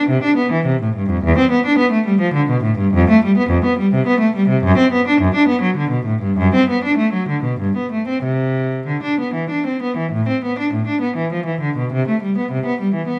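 Set in a flowing 3/4 at roughly 93-110 BPM with a rubato feel, this classical, baroque-style suite movement for unaccompanied cello moves with a grave gravity. A single bowed cello carries the whole piece from 0.0 to 13.2 seconds, ranging from E2 up to D4 in a period style. Its gut-string tone is dark and reedy, with a smooth top, and it sits up front in the sound. The music begins in C major and turns toward A minor at 10.1 seconds for the closing moments. Close, detailed microphones capture the instrument within a moderate recital hall reverb of about 1.2 seconds, and the recording is a short cut from a longer piece.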